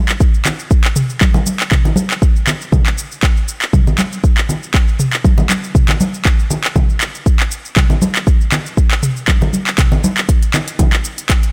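A crisp-hatted afro-pop kit of handclaps, shaker and toms opens this earthy, spiritual house excerpt with a light 16th-note swing, joined a beat later by a deep, up-front electronic kick and then by bright, damped, thin-skinned congas struck with hard hands, all kept close and dry.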